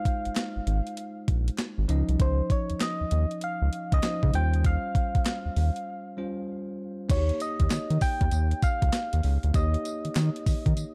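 Bouncy and punchy, this short new jack swing excerpt at 98 BPM swings over Ab6, Dbmaj9 and Eb13 chords. A crisp, overdriven 8-bit drum machine with a thumpy kick and a round, deep analog bass sit up front, while a bell-like tine electric piano, a gentle FM synth lead with chorus and delay, and very quiet, hollow group handclaps fill out a dark production before a break at 5.9 seconds leads into an Eb7 passage.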